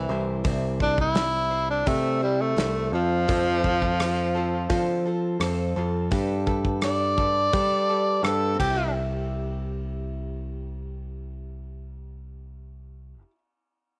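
A small room ambience frames this hopeful, open-road folk rock and heartland rock cut, moving at a straight 85 BPM in C major. A breathy, whispered tenor saxophone with light vibrato and a slapback echo carries the solo melody up front until 8.9 seconds, over a boxy parlour-style picked steel-string acoustic guitar and a growly, direct-amped picked electric bass. A natural country drum kit with a punchy kick and medium-tuned snare plays from 0.4 seconds and closes its part with a fill at 8.6 seconds as the chords return to C, before guitar and bass carry on briefly into the next section.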